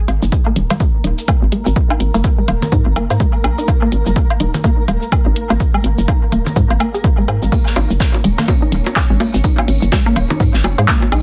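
Sparse and clinical, this minimal techno fragment rides a swung 4/4 groove from its opening moment. An up-front electronic kick sits beside a hollow, knocking FM bass that is bouncy and fast in attack, the bass carrying sidechain pumping. A punchy analog drum machine supplies handclaps, hi-hat and shaker, joined by layered woodblock, congas and bongos with tape echo, both parts sharing a tape-warm character. In the background, a squelchy, resonant blip pluck with detuned square and sawtooth tones runs through chorus, cassette tape, tape echo and sidechain pumping, while a flickering, grainy granular texture with slow attack and long release enters at 0.7 seconds, bathed in its own reverb and pumping too. At 7.5 seconds, a loose indie drum kit recorded in a small room adds high-passed hi-hat, a medium-tuned snare and tambourine at a lower level. The mix carries light reverb and a dense, heavily limited modern master.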